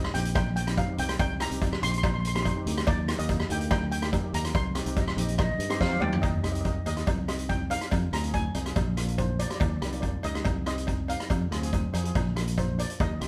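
Calypso at 142 BPM with a driving, tense feel, played live in one room with light reverb: a shimmering lead steel pan carries the melody over softer, airy cello pans in the background, a bright, growly fingered electric bass and an up-front street-band kit with a high-tuned snare and boomy kick, while a cowbell rings along. A mellow, distant flute with a breathy chiff slips in briefly from 5.0 to 6.2 seconds, just as a drum fill at 5.8 seconds leads from the opening Ebmaj7 and Cm7 harmony into a cycling Eb, Cm, Fm, Bb progression. The recording is cut from a longer piece.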